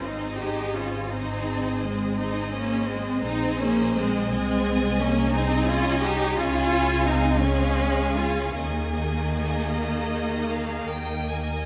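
A wet concert-hall reverb surrounds this slow, serene romantic movement for chamber string orchestra, an excerpt in Ab major and 12/8 that breathes with rubato at about 45-59 BPM in dotted quarters, with vibrato in every section. A focused, rich first violin section carries the melody over a dark, woody second violin line, while smooth, even violas sound distant in the accompaniment. Warm, expressive cellos with portamento and an up-front, soft-attacked double bass section anchor the bass as the harmony moves from Ab through Db to Ebsus4.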